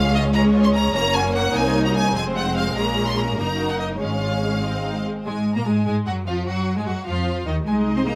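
Cheerful and graceful, this quick classical-period movement for string orchestra moves at 99 BPM in 6/8 with rubato, tuned to A4 = 445 Hz, and this passage from a longer piece restates its opening phrase at 5.3 s. A clear, focused violin section carries the melody while a rich, smooth-topped second violin section adds a second line, a soft-attacked, distant viola section supplies the accompaniment, and an intense cello section joins a dark, even double bass section on the bass, all bowed with vibrato. Light reverb places the studio ensemble in a gentle space as the harmony travels from Db through Gb, Cm7 and Fm to Ab before opening onto Gbmaj9.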